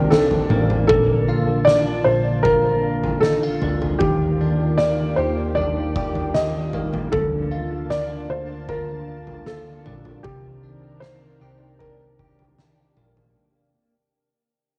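Dreamy and floating, this dream pop fragment drifts at 77 BPM in Bb major, with a soft, felt-muted upright piano carrying the melody up front through cassette tape and analog delay while a thick, warbling detuned pad holds sustained chords beneath it. A bright, clean electric guitar recorded direct picks compressed arpeggios through ensemble chorus and delay, a round, dark hollow-body bass anchors the low end, and an oversized low-tuned drum kit with a punchy kick, fat snare and toms pumps in a gritty, saturated stone room. Cut from a longer piece, the whole passage moves from Cm9 through Bbmaj7 and Ebmaj9 in a home cassette recording that fades out across its 13.4 seconds.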